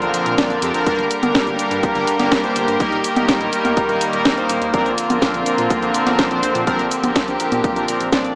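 Danceable and romantic, this short italo disco excerpt moves at 124 BPM in a straight 4/4 in Bb major, cycling through Bbadd9, Gm and Eb. Up front, a chamber string section with a reedy, gut-string period tone holds sustained bowed chords, while fat, brassy analog synth stabs with a filter sweep carry chorus and digital delay. From 0.4 s a punchy electronic kick joins an overdriven house kit with a cracking snare, cabasa, congas and hi-hat, over a deep, round analog bass set in the background, all under a moderate plate reverb and a small-speaker sound.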